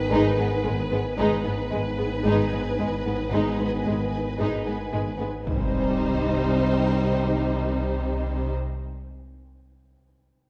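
This short excerpt of a slow, mysterious and tense suspense film score opens on a violin section melody hovering between Cb5 and C5. Beneath it sit an eerie, metallic drone with chorus, a grainy, flickering granular texture in the background, and a very quiet, mellow French horn section holding chords. Almost at once the rest of the strings join: a second violin line, violas with vibrato and portamento, a very quiet cello riff, darker cellos on the bass, and woody double basses underneath. At 56 BPM in 4/4 and in C harmonic minor, the harmony sits on Ab minor until the cello riff drops away at 5.3 seconds. At 5.5 seconds a huge, bright impact arrives as the chord turns to C minor. The lush, bowed strings sit in a moderate scoring-stage reverb within a dark, warm production.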